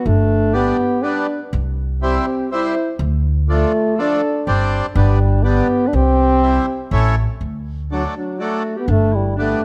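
The euphonium leads this bouncy, jolly alpine dance-band tune, its clear, soft-attacked tone carrying the melody up front in a classical style from the very start. A clarinet with a warm, classical voice sings a second line just above it, while an up-front upright bass, plucked pizzicato on steel strings, gives a woody, dark foundation from 0.1 seconds. The accordion joins at 0.5 seconds with reedy, full, rich chords sitting forward in the middle of the sound. The tune moves at 122 BPM in 3/4 with a light swing on the eighth notes, in C major, passing through chords such as C, Dm and G before a brief new section begins at 7.4 seconds on D. Close, detailed microphones and light reverb keep every instrument distinct in this short excerpt cut from a longer piece.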